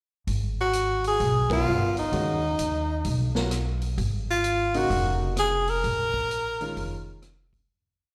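Modal jazz with a spiritual, hypnotic mood, swinging in four from a minor-ninth chord that moves to another minor chord at 4.0 seconds. Upright bass and a vintage drum kit start together at 0.3 seconds, the woody, thumpy pizzicato bass playing a two-feel line up front while the drums keep time on the hi-hat with sticks, adding ride cymbal, rim click, a medium-tuned snare and a punchy kick, all with a rolled-off top. A bright tenor saxophone enters at 0.6 seconds, close-miked and carrying a solo built from motif-based call phrases, with vibrato, a soft attack and a slapback echo. The band hits an accent at 1.4 seconds, and the concert grand piano joins just after with intimate, syncopated comping in quartal voicings, its deep bass and audible action noise also touched by slapback echo. The sound is that of a live gig heard through the venue's PA, with light recital-hall reverb, and the whole short piece fades out from 5.8 seconds.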